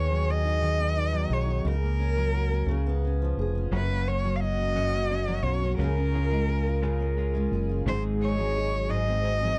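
A dry, close recording in a 1970s studio style, touched with light reverb, carries this heartfelt, romantic pop ballad in six-eight, cut from a longer piece. Up front, a single bowed cello sings the melody with a soft attack, vibrato and portamento, its tone rich yet nasal and boxy. Beneath it, a double-tracked fingerpicked steel-string dreadnought guitar gives full-bodied accompaniment with the odd finger squeak, while a fingered electric bass sits forward, dark, round and punchy. A mellow French horn section plays a second line from a distant, roomy place in the background, tight and classical in style. At 3.7 seconds a clean, compressed electric guitar recorded direct joins with picked arpeggios, kept low behind the other parts.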